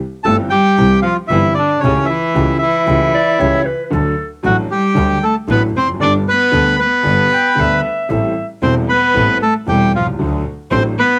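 This is a tango fragment cut from a longer piece, nostalgic and passionate, moving with a free, rubato feel in 4/4. A reedy, dark bandoneon carries the melody up front, smooth and full of longing. Beneath it a bowed cello sings a second line with light vibrato and an even, silky top, while a concert grand piano gives boxy, deep-bassed accompaniment with long sustain. A bowed double bass anchors the low end, focused and close with its own vibrato, and stands apart by sounding clean where the bandoneon, piano, cello and clarinet carry a cassette-tape colour. From 3.1 s to 8.5 s a mellow solo clarinet adds a distant, roomy line in a classical style, and the whole short passage sits in light reverb with the intimate feel of a home recording on cassette.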